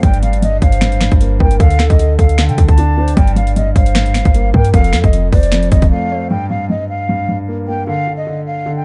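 A brooding, melancholic half-time trap groove opens with every part at once. A breathy silver concert flute carries the melody, close-miked and hollow with vibrato and softened by a low-pass filter. Beneath it, a gliding portamento lead sings a smooth second line in the background, thickened with chorus and tape echo, while a dark concert grand piano plays filtered accompaniment with deep bass. Up front, an overdriven trap kit hits with a hard-clipped kick, sharp snare, metallic hi-hats and finger snaps, and a clean, boomy sine 808 bass decays under it. The drums and 808 drop out at 5.9 seconds for a brief break, and the lead stops at 6.3 seconds as piano and flute carry a sparser closing section to 8.8 seconds. A digital ambience keeps this cut from a longer piece shadowy and rounded, with the top end rolled off.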